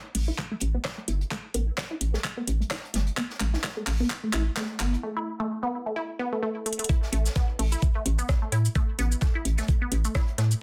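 A squelchy, resonant blip pluck with phaser, delay and sidechain pumping sets the tone of this clinical, quirky minimal techno excerpt at 129 BPM with a swung 16th-note feel. It sounds from the start alongside a hollow, bouncy FM bass that also pumps, a tape-warm garage kit of cabasa, handclaps, metallic hats and rim clicks, and a faint brushed jazz kit with a high-tuned snare. An up-front knocking electronic kick arrives at 0.4 s, and a filter sweep on the pluck and drum fills build toward a drop at 6.9 s, all set in moderate studio reverb within a dense, heavily limited master.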